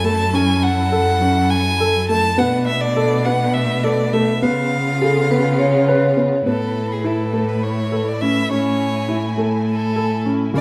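A close, clear solo violin sings a vibrato-rich melody over a dark, boxy grand piano's arpeggios, a bowed cello bass with expressive portamento and a lush, distant studio string section holding sustained chords. This restless, urgent chamber music moves in 7/8 at 206 eighth-note BPM, through F#m7, Bm7 and C#7 before settling onto Asus2 and Amaj7 at 6.5 seconds. A metallic, ringing vibraphone with fast motor vibrato adds a brief second line from 5.0 to 6.4 seconds, and a moderate scoring stage reverb surrounds this excerpt from a longer piece.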